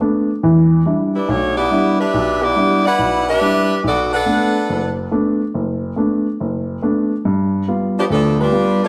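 A warm baby grand piano opens this short jazz fragment in B minor, playing accompaniment from the low register up through the middle, with its intimate, up-front sound carrying audible action noise. At 1.1 seconds a bright, tight saxophone section enters with the melody, its close-miked tone shaded by vibrato and delivered in a sultry, brassy jazz style. The horns drop out at 4.9 seconds, leaving the piano alone until they return at 8.0 seconds. The tempo is a swinging 141 BPM in 4/4, and the harmony moves from Em7 to Bm7 and then to G7. A wet, large studio reverb places the ensemble further back in the room, and the tuning sits a touch below standard pitch.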